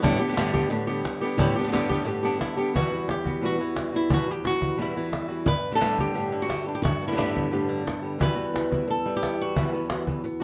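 A bright, fingerpicked flamenco guitar with fresh strings sits up front and carries the melody, ranging from E2 to B4 across this fiery, passionate flamenco passage cut from a longer piece. A second fingerpicked acoustic flamenco guitar, warmer in tone and set lower in the mix, supplies stabs beneath it from E2 to G4. A snappy cajon with snares, heard in a live room, drives the straight 4/4 pulse at 176 BPM until 10.2 s, while both guitars play through to 10.4 s. In E minor, the harmony moves between Gadd9 and Emadd9, shifting into a new section at 2.7 s. A moderate studio reverb gives the acoustic instruments a short, natural sense of space.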